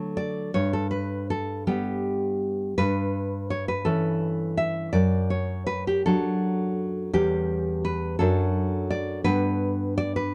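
A 6/8 pulse moves at 55 dotted-quarter beats per minute with a loose, rubato feel, giving this romantic solo classical guitar passage in D major a sunny, tender mood. The fingerpicked nylon-string guitar sits up front with a full-bodied, deep classical tone, ranging from E2 to E5 across this brief cut from a longer piece. Its harmony drifts from D to G, through A7/G and C#dim/E, and settles back on G at 9.3 seconds, all within a dark production touched by light reverb.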